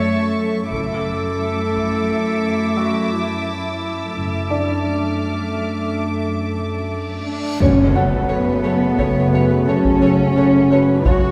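This ominous, uneasy suspense film cue in F# minor at 87 BPM in 5/4 opens on sul tasto strings, with a dark cello section up front, violas, a violin second line and a faint high violin texture, alongside a clear solo clarinet and a felt-muted upright piano with audible action noise; a bowed double bass section and hard-stick taiko join at 0.7 s, and a reverse cymbal at 7.4 s leads into a huge impact at 7.6 s, where a violin melody, very quiet bright trombones, mellow French horns, a ringing fingerpicked Celtic harp riff and soft-mallet timpani enter, all set in scoring-stage reverb and heard from further back in the room.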